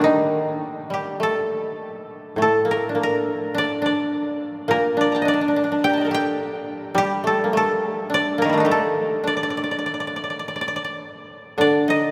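From the first moment, three kotos sound together in an austere, calm passage of Japanese traditional chamber music, cut from a longer piece and lasting about 12.1 seconds. The melody koto has a mellow, woody tone, plucked with fingerpicks and placed up front, while a second koto carries a brighter line over the same Eb3 to Bb5 range, also close and dry. Beneath them, a third koto supplies a warm accompaniment in the low register, from A2 to G3, sitting slightly further back. The music moves freely in rubato around a slow pulse of 52 BPM in 2/4, drawn from the D miyako bushi scale and tuned to A4 = 441 Hz. The recording captures the ensemble in a church or concert hall, where a long cathedral-like reverberation of 5.2 seconds surrounds the intimate plucked sound and lends the quiet playing a spacious, solemn air.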